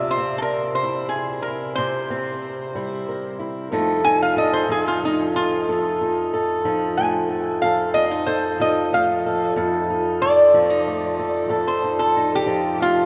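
Rollicking yet laid-back, this short slice of acoustic country blues moves in a straight 12/8 and is cut from a longer piece. A lap resonator guitar carries the melody up front, its metallic, nasal slide tone picked out with fingerpicks, and from 3.7 seconds it takes a solo played with a steel bar. Beneath it, a fingerpicked swing-style acoustic guitar supplies the accompaniment, boxy and bright with fresh strings and an audible finger squeak. The harmony rests on C7 before moving to F7 at 3.7 seconds. A cathedral reverb with a long 6.3-second decay surrounds the pair, giving the sound of a church or concert hall.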